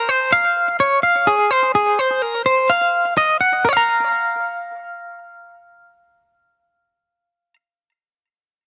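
A cassette home recording with light reverb frames this intricate, restless rock excerpt in 5/4 at 127 BPM in Bb minor, where a lone twangy electric guitar, clean, fingered, compressed and scooped, sits up front with tremolo and tape echo, moving from Dbmaj7 and Ab9 to Bb5 at 3.6 seconds before stopping at 7.6 seconds.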